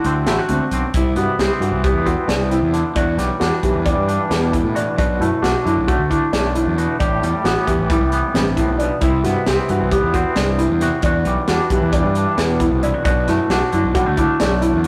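Set in a straight 9/8 at 268 BPM counted in eighths, this wistful, intricate math rock and midwest emo excerpt in E minor moves through jazzy chords like Cmaj7, Em9, Bm7 and Am9. A twangy, clean picked electric guitar with tremolo and a growly fuzz-overdriven fingered bass sit up front, while a felt-muted upright piano plays mellow, intimate arpeggios with audible action noise. Underneath, a crisp fusion drum kit with a high-tuned snare and tight kick pumps in a small room, all within a stone-room reverb and the rough, saturated sound of a rehearsal-room recording.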